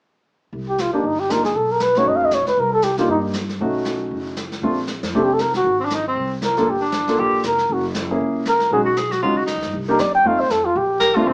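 Warm and swinging, this short cut from a longer small-group jazz piece moves at a brisk 235 BPM in 4/4, with a pizzicato upright bass of woody, thumpy gut strings and a distant, roomy brushed drum kit carrying the pulse while a smooth vintage grand piano comps up front. A bucket-muted trumpet leads with a dark, veiled tone and light vibrato, and at 5.8 seconds a breathy tenor saxophone joins with a whispered, intimate subtone and scooped notes as a second line. The chords move from Cm7 and B9 into a passage through Bbmaj7, Abadd9 and Gm7, all set in a wet studio reverb heard from further back in the room with a small-speaker sound.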